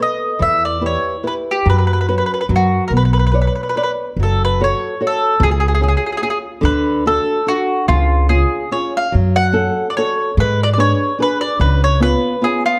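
A bright, round, picked mandolin carries the melody up front in this wistful, romantic Italian folk serenade excerpt at 145 BPM in a swung 3/4, over a small, fingerpicked nylon-string guitar and a woody, thumpy pizzicato upright bass, moving from B minor into F# harmonic minor at 4.2 seconds, all set in a dark, warm production with light reverb and a faint mains hum.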